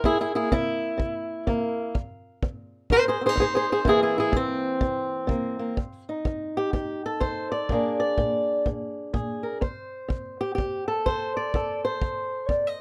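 Acoustic country blues with a soulful, swaggering air, this short cut from a longer piece moves at 125 BPM in 4/4 with a 64% swing on the eighth notes. A fingerpicked swing-style steel-string acoustic guitar carries the melody, sitting up front with a dark, boxy tone and ranging from F2 to Eb5. A kick drum played with brushes runs alongside from the start to 12.6 seconds, its sound smooth and punchy, recorded in a small room with a rolled-off top. The guitar takes a solo through the opening section up to 5.8 seconds, moving over C7 and F5 chords, before the second section shifts to F7 and Bb7 and settles on F. The whole has the rough feel of a home demo, touched with light reverb, and the tuning sits slightly below standard pitch at A4 = 438 Hz.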